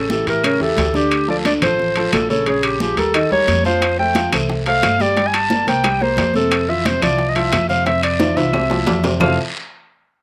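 Sophisticated and danceable, this brisk Afro-Cuban jazz cut in F major moves at 178 BPM, with a smooth, up-front classical-style clarinet leading over a short-sustained baby grand piano touched by slapback echo and a woody pizzicato upright bass. Ringing, saturated metal-shell timbales sit prominently among background congas with a bright, thin skin, distant woody claves, and a raspy guiro carrying its own slapback echo, while round, low-tuned bongos join at 3.8 seconds. A drum fill from 8.2 to 9.2 seconds closes the main passage as the harmony resolves to Fmaj7, all in a dry, open-air sound.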